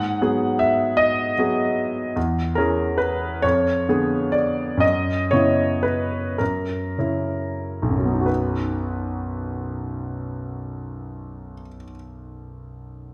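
A concert grand piano plays alone for the full 13.1 seconds, its tone intimate and natural, with deep bass and the soft clatter of the action audible up close. This short passage, cut from a longer piece, is a romantic classical character piece in B major and 6/8, tuned to A4 = 441 Hz, and it moves with a free, rubato feel at roughly 30 to 52 dotted-quarter beats per minute. The mood is passionate yet hopeful. The harmony drifts from G#m7 through C#m/E and Fdim7 to a suspended F#7sus4 and then F#7, while the pulse slows from 1.0 to 8.3 seconds before settling onto a B major chord that opens a new section. The piano spans from B1 up to F#5 and sits in a recital hall with a lush reverb that lingers for about 1.3 seconds.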